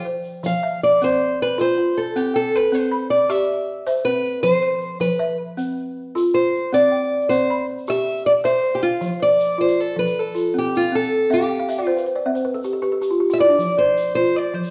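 A boxy, fingerpicked old ladder-braced acoustic guitar with audible finger squeak carries the melody up front from the start, soloing through the first 9 seconds over woody, round balafon arpeggios struck with soft rubber mallets and a grainy, bright egg shaker, in a joyful, hypnotic West African string and xylophone piece in a straight 12/8 that moves between F and C chords, with a balafon fill from 11.3 to 13.6 seconds, all set in the moderate reverb of a recital hall in this section cut from a longer piece.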